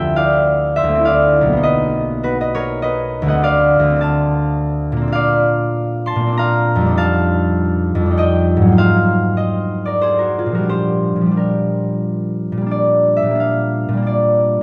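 Peaceful and serene, this brief passage from a longer classical solo harp piece flows in a rubato three-beat feel, its fingerpicked concert harp ringing up front across a deep range through a moderate concert-hall reverb as lush, extended chords unfold.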